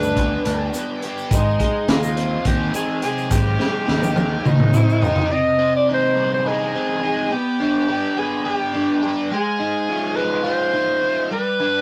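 This hypnotic, trippy psychedelic rock excerpt in 7/8 opens with a breathy alto saxophone carrying the melody up front, its whispered, soft-attacked tone shaded with vibrato. An overdriven, double-tracked electric guitar plays a compressed riff through a rotary speaker. Underneath sit a piping, scooped tonewheel organ holding sustained chords through a slow rotary speaker, and a picked, amped electric bass. A crunchy breakbeat kit with a punchy kick and high-tuned snare joins almost at once, its dark, gritty sound close and saturated, while a grainy egg shaker ticks in the background. The drums roll into a fill at 3.6 seconds, and by 5.3 seconds the kit, bass and shaker have all dropped away, leaving saxophone, guitar and organ to drift over a second passage that moves from Cm through G/B and Ab6 back to G. The rough rehearsal-room recording carries a short, wet booth ambience.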